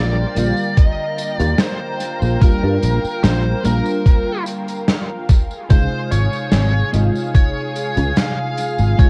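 Nostalgic and dreamy, this short vaporwave excerpt sits in a slow, straight 4/4, drifting from a rootless Ebmaj9 to a Dbmaj7 at 5.3 seconds inside an echo-heavy small room with a cassette-tape haze. A biting, overdriven lead guitar carries the melody through tape echo over a mellow, detuned FM electric piano with a soft pad layer, phaser and chorus, while a thick sawtooth unison pad holds bright sustained chords further back. Underneath, a growly fretless bass sits up front, a gated 80s kit with tambourine and a medium-tuned snare enters at 0.4 seconds, and a thumpy sampler-style kick arrives at 0.8 seconds.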